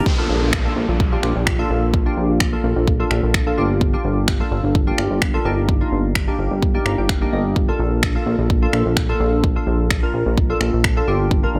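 Glassy digital keys with a chorused sine tone and a filter sweep carry the harmony in this upbeat, euphoric dance-pop excerpt, pumping with sidechain compression and breaking into a short fill from 6.6 to 7.6 seconds. Beneath them, a retro, glossy synth bass of pulse and sawtooth waves plucks and sustains, while a punchy, tape-tinged electronic kit drives the groove with finger snaps and kick. An electronic downlifter sinks through the opening until 3.8 seconds, and the chords move between major-seventh and minor-seventh colours in a digital ambience.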